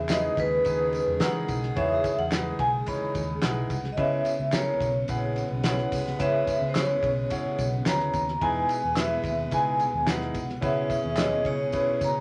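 A ringing, metallic vibraphone melody opens this urgent, driving uptempo 1960s-style soul excerpt at 108 BPM in C# minor, set against a horn section's second line in the background, soft, flute-like tonewheel organ chords spun through a fast rotary speaker, and a round, foam-muted fingered bass, with a clear baby grand piano showing audible action noise, a cloth-damped thuddy kit with dark cymbals and a fat snare, and band-limited group handclaps with tambourine joining at 0.1 s, moving between Emaj7 and C#m7 in a short, wet studio reverb.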